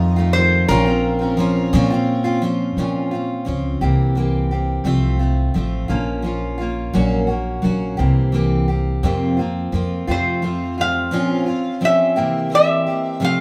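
A lap resonator guitar played with slide and fingerpicks opens with a nasal, metallic melody over a full-bodied picked dreadnought and a woody, thumpy pizzicato upright bass in this wistful, haunting acoustic folk piece in Bb minor, swaying at 57 BPM in 6/8 in a moderate room reverb; the slide guitar falls silent at 2.4 seconds and returns at 10.1 seconds, just before the bass drops out at 11.1 seconds.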